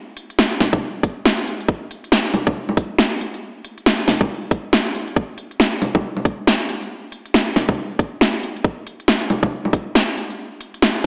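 A garage drum kit of cracking snare, crisp hi-hats and bongos, tape-warm and up front, carries this nocturnal, ghostly future garage excerpt with a 16th-note swing, joined from 0.7 to 9.8 seconds by a tight, layered electronic kick, both re-recorded in a large room and set in a lush hall reverb with an AM radio sound.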